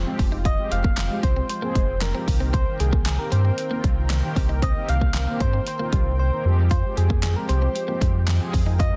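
This dance-pop excerpt feels confident yet bittersweet, moving at a straight, steady pulse over chords that shift from Fmadd9 to Cm7 and back. A barely audible electronic impact opens it as a soft, round, keys-like FM synth lead carries the melody with chorus and tape echo, set against a smooth analog pad in the background that breathes with sidechain pumping. A deep, sine-toned sub bass with an octave sits up front, while a dark, brassy synth with detuned sawtooth and square waves, a sub octave, a filter sweep and vibrato fills in the accompaniment. A bright, clean electric guitar recorded direct plays a picked, compressed riff with analog chorus from the background. The punchy, layered electronic drum kit, with a fat snare soft-clipped, drops out between 6.2 and 6.7 seconds, and a very quiet, crisp group handclap adds a close, dry human touch inside digital ambience and a dense, heavily limited modern master.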